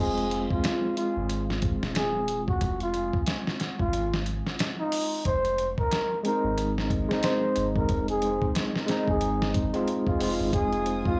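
Cinematic and hypnotic, this trip hop excerpt, cut from a longer piece, sits on a swung 16th-note feel over a single Fm7 chord. A trumpet with a bucket mute carries the melody up front, its veiled, breathy tone delivered in an intimate jazz style with scooped notes and a dub echo trailing behind it. A clean tine electric piano supports it throughout, heard through its built-in speakers with harmonic tremolo and tape echo. A dusty, sampler-style drum kit enters at 0.2 seconds with a thumpy kick, medium-tuned snare and hi-hat, compressed and re-recorded in a large room, while a round, mellow dub sub bass with transformer saturation anchors the low end. At 10.5 seconds a dark, lush symphonic violin section adds bowed sustained chords with vibrato, and the whole recording has a dry, gritty hardware character with cassette tape grain and studio ambience.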